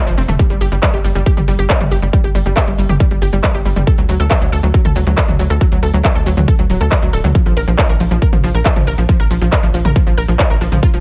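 Uplifting trance at 138 BPM in a soaring, emotional mood, cut from a longer piece: a lush, detuned unison pluck plays arpeggios with tape echo and sidechain pumping over a tight, nasal sawtooth sequencer bass with tube saturation and pumping, while an overdriven big-room dance kit adds crisp hats, handclaps, shaker and toms, a punchy, up-front electronic kick enters at 0.4 seconds, and the chords move from D at 3.9 seconds to Bb5 at 7.3 seconds in a dry mix.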